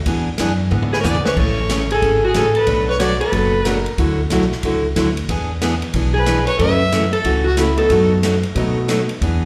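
A brisk swing at 184 BPM in 4/4 drives this short cut from a longer western swing tune in A major, its mood swinging and down-home. An up-front, woody upright bass thumps through the whole clip, beside a bright, full-bodied picked steel-string acoustic guitar with audible finger squeak and slapback echo, while an airy, polished big-band drum kit with a punchy kick plays a fill from 0.7 to 1.4 seconds. At 0.9 seconds a dark, clean hollow-body jazz guitar carries the melody alongside a focused, smooth-topped fiddle with light vibrato, both treated with slapback echo; they drop out at 3.8 seconds and return around 6.1 seconds. A clear upright piano sits in the background with brief touches, and the chords move from E7 through Amaj7, Bm7, Dadd9 and F#m7 to B7/F#. The whole thing sounds like a live club gig heard through the venue's PA, with small-room ambience and a moderate reverb.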